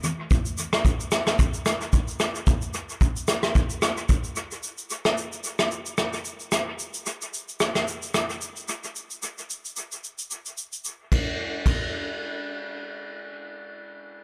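An echo-heavy mix with light reverb and studio ambience frames this deep, hypnotic amapiano excerpt at 111 BPM in 4/4, swung at 55% on the sixteenths. A soft brush drum kit carries the whole groove with a punchy kick, ride cymbal, rim click and shaker, its acoustic, roomy sound given a rolled-off top and trailed by dub echo. The kit plays from the start until 11.8 seconds, and a new section begins at 11.1 seconds, running until 14.2 seconds.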